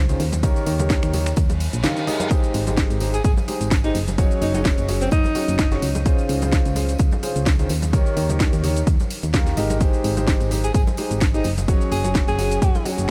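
A round, punchy FM bass opens this uplifting, euphoric piano house excerpt at 128 BPM in Ab major, and a concert grand riff enters at once with sidechain pumping, a diffuse ambient delay, audible action noise and a vintage, intimate tone. A house kit of cracking snare, bright hats, finger snaps and shaker arrives alongside tambourine and congas, the hand percussion ringing softly in the background, while an overdriven, up-front electronic kick lands at 0.4 seconds and drives the swung 4/4 groove. Over an opening Eb7, a reverse cymbal rises briefly in the background just before the chords move on through Abmaj7, Gbsus2 and Dbmaj7. A breathy alto saxophone with whispered, jazz-style vibrato plays a solo line at 3.1 seconds and returns near the close, its soft attack trailing into the same diffuse delay. Light reverb and a small room ambience frame the whole mix.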